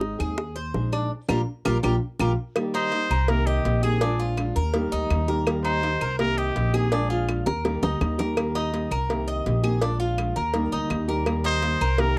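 A dry, close recording in a 1970s studio style, with light reverb, carries this danceable, relaxed passage of Cuban son and guajira cut from a longer piece. An up-front, woody pizzicato upright bass, a small fingerpicked nylon-string guitar, a bright, metallic tres picking arpeggios on double strings, round low-tuned bongos and cowbell, and claves in the background play throughout, with a band accent and drum fill leading into the next section at 2.6 seconds. A nasal, breathy trumpet with a straight mute plays the solo melody from 2.8 seconds with jazz-style vibrato, returning briefly at 11.5 seconds.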